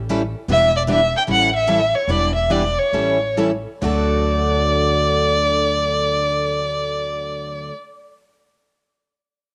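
Over a swung 4/4 that slows between 0.5 and 3.8 seconds, this playful, lively snippet of acoustic string swing sets a woody, thumpy pizzicato upright bass beneath two bright, fresh-stringed picked steel-string acoustic guitars, one plugged in with audible finger squeak and the other further back, while an up-front warm violin sings the melody with vibrato and portamento over Em7 and A7 changes that resolve to D, the guitars and violin carrying a cassette-tape tint within a small, spring-reverbed home-recorded room.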